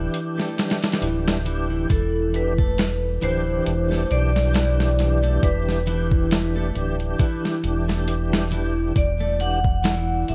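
A gritty, compressed sampler-style soul kit swings its 16ths at a slow 68 BPM, its thumpy kick arriving at 1.9 seconds alongside a bright, ringing vibraphone melody with tape echo, while a deep, round analog bass, a lightly overdriven tonewheel organ with chorus vibrato and slow rotary speaker, and twangy, clean twelve-string electric guitar arpeggios with spring reverb hold a Dsus4 chord under a haze of vinyl crackle in this hypnotic, smoky trip hop excerpt.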